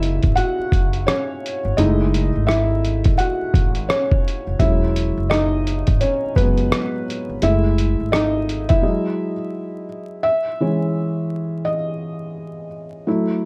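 The recording has a dark, warm production with vinyl crackle and a moderate studio reverb, heard as a cut from a longer piece. It is cosy, nostalgic lo-fi hip hop at 85 BPM in 4/4 with a swung sixteenth feel, in E major and tuned to A4 = 437 Hz. A felt-muted upright piano sits up front, soft and mellow with audible action noise and an intimate, natural tone coloured by cassette tape and plate reverb, carrying a solo over chords that move between E6/9 and F#m7 before reaching Emaj9. Beneath it, a woody, growly pizzicato upright bass with steel strings holds the low end, while a muffled, compressed, pitched-down sampler-style kit, placed up front, supplies a thumpy kick, hi-hat and rim click with a tape-warm, small-room character. At 8.8 s the bass and drums stop for a break, leaving the piano alone, and from 10.2 s it continues into a second section that settles on E6.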